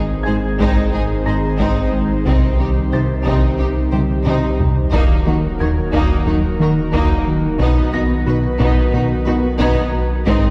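A straight 4/4 pulse at 90 BPM drives this futuristic, vast hybrid orchestral and electronic film-score excerpt: hard-stick taiko drums in the background, with a fill at 3.9 seconds, sit over a deep sine sub bass and a smooth sawtooth synth bass riff, while an airy, breathy chorused pad and very quiet mellow French horns hold chords moving through Ab, Cm, Ebm and B, a glassy detuned wavetable pluck arpeggiates, and a clear grand piano adds high delayed texture; from 0.3 seconds a focused, lush violin section carries the vibrato melody above a rich second violin line, steady violas and a faint cello bass, heard from further back in a wet scoring-stage reverb.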